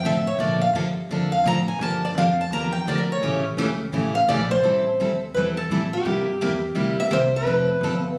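A bright, boxy picked archtop guitar carries the melody up front in this fiery, bittersweet fragment of acoustic string swing (jazz manouche), driving along at 170 BPM with a swung feel, while a full-bodied steel-string dreadnought takes a solo through the first 4.6 seconds over changes such as Bbmaj7 and A7b9. A woody, thumpy pizzicato upright bass anchors the low end as the music settles into A minor at 4.6 seconds, moving through Am7 and C7 before landing on F6. Captured on a phone in a club with moderate reverb and compression, the sound is immediate and roomy.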